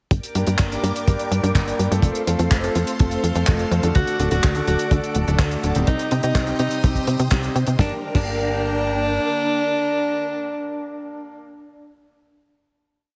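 A four-on-the-floor kick and a dry, damped 70s kit with closed hi-hat, handclaps, snare and crash drive this melodramatic, bittersweet Italo disco piece in G minor at 125 BPM, where a punchy, octave-jumping sawtooth sequencer bass sits up front under lush string-machine chords with phaser and ensemble chorus and brilliant, filtered grand piano stabs in dotted rhythm. A bright alto saxophone joins at 4.0 seconds, repeating a riff with light vibrato and delay. It all runs through a heavily compressed radio sound in a small room before the piece settles on a final G minor chord from 7.8 seconds.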